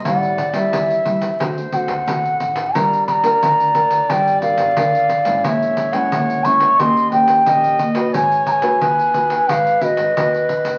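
A hollow, pure bamboo bansuri carries the melody up front in this nostalgic, yearning samba and choro excerpt at 89 BPM, with a smooth classical clarinet on the second line, a dark thumb-plucked nylon-string guitar, a woody pizzicato upright bass in the background and a jingly pandeiro, all heard through wet studio reverb and the crackle of a very old 78 rpm record.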